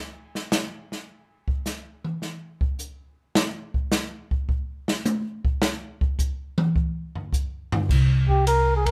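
Small-group swing and bop jazz at 106 BPM in a swinging, smoky mood, this short cut opens with an airy, polished drum solo from 0.4 s, with dark cymbals, a medium-tuned snare and a boomy kick up front in a moderate club reverb, before a woody pizzicato upright bass enters on C2 at 7.9 s over a C7 chord and a veiled, vintage trumpet with a bucket mute, vibrato and scooped notes joins at 8.3 s just ahead of a closing band accent.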